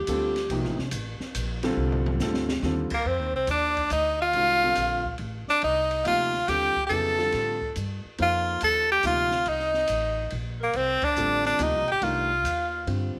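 An edgy, punchy tenor saxophone carries the melody up front from 2.9 seconds, playing forcefully in a jazz style with scooped notes. This hypnotic, spiritual modal jazz excerpt swings in 3/4 at 141 BPM over a single F7 chord in F mixolydian. A very quiet, mellow alto saxophone opens with a short solo, full of vibrato and subtone with a smooth top, then returns as a soft second line beneath the tenor. A woody, growly upright bass played pizzicato on steel strings anchors the low end, while an upright piano with a polished, present tone and long sustain fills out the accompaniment. The open acoustic drum kit sits in a natural studio room with dark cymbals, a high-tuned snare and a boomy kick, adding a fill at 1.8 seconds before the band hits an accent at 10.9 seconds. A light reverb gives the whole group a sense of shared space.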